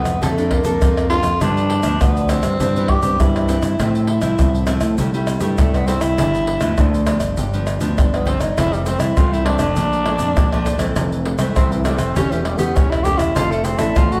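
A growling, breathy tenor saxophone solos with vibrato and scooped notes from the first moment over warm, fingerpicked classical nylon-string guitar and a punchy, overdriven fingered electric bass, while tube shaker, pandeiro, tamborim and a tight surdo sit close and up front from 0.1 seconds, giving this sunny, festive samba and choro excerpt from a longer piece a straight 100 BPM feel in C major, with chords moving from Bbmaj7/F through G7, Fmaj7 and A7/E to Dm7/F, all heard from further back in a large, wet studio reverb.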